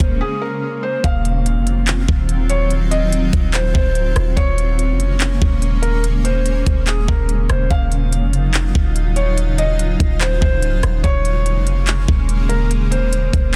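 A deep, boomy 808-style bass sits up front with a clean, dark sine tone, anchoring this ethereal, spacious cloud-rap excerpt at 144 BPM in a half-time feel, moving between Bbm9/Eb and Ebm69 in Eb dorian. A knocking trap kit of kick, crisp hi-hats, handclaps and rim clicks carries vintage 12-bit sampler grit, and the track drops into a break from 0.2 to 1.0 seconds. Above it, a granular pad blurs sustained chords into an evolving haze with its own reverb and sidechain pumping, while a felt-muted upright piano plays a soft, intimate melody with audible action noise through tape echo, all in a dry, dense, heavily limited modern master.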